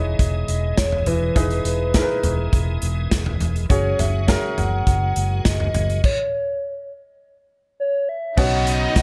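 A hollow, woody clarinet-like synth lead with chorus carries the melody in this uplifting, anthemic piano-driven pop piece at 103 BPM in straight 4/4. It sits over clear, polished baby grand piano, piping tonewheel organ chords with chorus vibrato and a slow rotary speaker, and a dark, round, foam-muted electric bass, while a punchy, airy country drum kit sits up front from 0.2 s. The harmony moves from Emaj7 to F#sus2, a stop arrives at 6.0 s, and at 8.4 s a lush, bowed violin section and a background downlifter enter as the chord turns to Bsus2.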